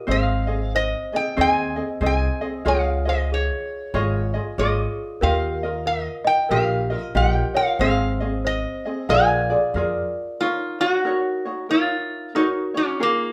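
Hawaiian music with a relaxed, languid swing, heard as a short cut from a longer piece played live by a band in one room with a wet, large studio reverb. Up front, a metal-body resonator slide guitar carries the melody, its fingerpicked slide lines sounding metallic and nasal across the whole 13.3 seconds. A ukulele, also up front, fingerpicks a bright, light accompaniment throughout, while a pizzicato upright bass on gut strings gives a woody, thumpy low end until 10.0 seconds. In the background, a worn celesta with medium felt hammers adds a delicate, sweet, bell-like second line that is slightly out of tune and stops at 9.7 seconds. The harmony moves through Ab, Dbadd9, Ebadd9, back to Ab and then Bb7 before shifting to Ebm7 as a new section begins at 10.4 seconds.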